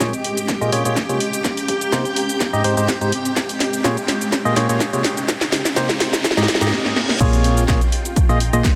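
A lightly swung 125 BPM groove drives this bittersweet, soulful piano house passage in Bb dorian, with a punchy, tape-warm electronic kick under an up-front garage kit of cracking snare, warm hats, shaker and crash, while a hollow, ring-modulated organ stab carries the riff through chorus and tape echo under a filter sweep. Shimmering vintage string-machine violins hold sustained chords and a cloudy, evolving granular pad adds a sustained texture over a Bbm7, Cm7, Abmaj7 cycle, all pumping against the kick in a lush hall, as a very quiet riser and reverse cymbal climb through the build-up. At the drop at 7.2 seconds, a round, dark FM bass enters on Bb1.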